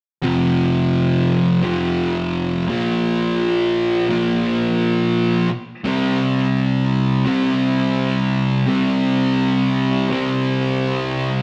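A straight 4/4 rock pulse at 85 BPM drives this anthemic, cathartic excerpt, cut from a longer piece, where a lone fuzz guitar plays from 0.2 to 11.4 seconds, moving through F5, Bb5 and C5 power chords. The picked, double-tracked electric guitar sits up front with warm, distorted fuzz, ranging from F2 to C4. A wet stone-room reverb and rough rehearsal-room sound give the playing a raw, echoing weight.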